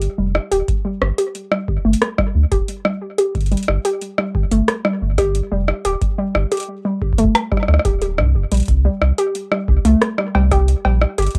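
Intricate and melancholic, this short IDM excerpt moves at 90 BPM in a straight 4/4, built on a round, sine-toned sub bass with tube saturation and a booming analog drum machine whose cowbell, metallic hi-hat and rim click sit up front, joined at 0.7 seconds by a deep electronic kick. Over them, a warbling, dusty pluck of square and sawtooth waves plays dark, short-decaying arpeggios through chorus, analog delay and plate reverb, and the harmony settles on a C5 chord at 8.7 seconds. The whole excerpt carries the lo-fi grain of a home cassette recording in a booth with moderate ambience.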